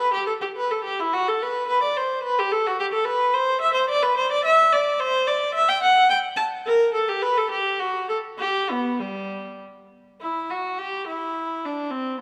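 A concert hall's moderate reverb surrounds a lone viola in this flowing, radiant baroque-style suite movement, cut from a longer piece and played in 3/4 at 107 BPM with a rubato feel, tuned to A4 = 439 Hz. The single bowed player has a rich, reedy gut-string tone with light vibrato in period style, ranging from G3 to A5. The music settles into G major at 3.4 s, and its opening material begins again at 10.2 s before the viola stops at 12.2 s.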